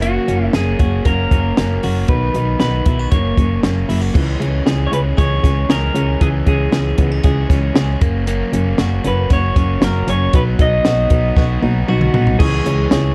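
A jangly indie pop excerpt at 116 BPM in C# dorian opens with a bright, slightly broken-up lead guitar through a small old amp carrying the melody over crunchy overdriven rhythm guitar, twangy direct-recorded clean arpeggios, a punchy round FM bass and an up-front compact cocktail drum kit with a high-tuned snare, moving wistful and restless through F#, B and C#m until a drum fill from 11.4 s gives way at 12.4 s to a soft, bell-like glockenspiel and a reedy, worn electric piano with fast tremolo in a dark production with light reverb.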